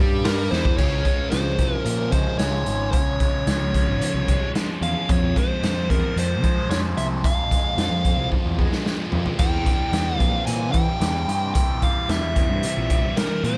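A dry, echo-heavy mix carries this dark, mysterious psychedelic rock excerpt at 112 BPM, where a bright, double-tracked fuzz guitar riff soaked in phaser and analog delay moves over C5, Db, Fm and C chords, an overdriven picked electric bass growls beneath, a gritty, up-front garage drum kit with a punchy kick and pumping small-room sound drives the beat and rolls through a fill at 8.3 seconds, and a compressed fuzz lead guitar with analog delay sings its high melody from 0.3 seconds onward.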